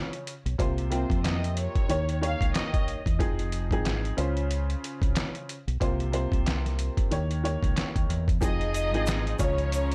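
Boom-bap hip-hop in F minor at 92 BPM, this dark, moody passage from a longer piece rides a swung 4/4 groove built on a worn, woody upright piano that sounds slightly detuned and filtered, cycling through chords such as Fm7, Dbmaj7, C7sus4 and Eb7. A gritty, compressed, pitched-down sampler-style kit sits up front with a thumpy kick, medium-tuned snare, hi-hat and handclaps, joined by a round, punchy fingered electric bass that stays low and dark. From 0.9 s a lush violin section carries a brief bowed melody with expressive vibrato, filtered and trailed by analog delay. At 8.4 s the violins return as the texture thickens: a hollow, flute-like pad with a slow attack and chorus hovers very quietly beneath, a background string section adds reedy, gut-string stabs in a period style, and a grainy egg shaker brings a bright, vintage shimmer. Light reverb gives the mix a modest sense of space.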